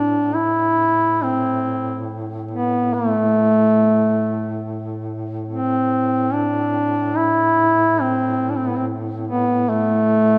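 A warm, smooth-topped duduk carries the melody up front between A3 and E4, while a mellow, close-miked second duduk holds a low A2 drone beneath it, coloured with vibrato and scooped notes. This Caucasian folk lament moves in a rubato 4/4 at about 71 BPM in A minor, tuned to A4 = 438 Hz, and its mood is longing and solemn. Both parts sound from 0.0 to 10.4 seconds, bathed in a church reverb with a 3.5-second tail, in a passage cut from a longer piece.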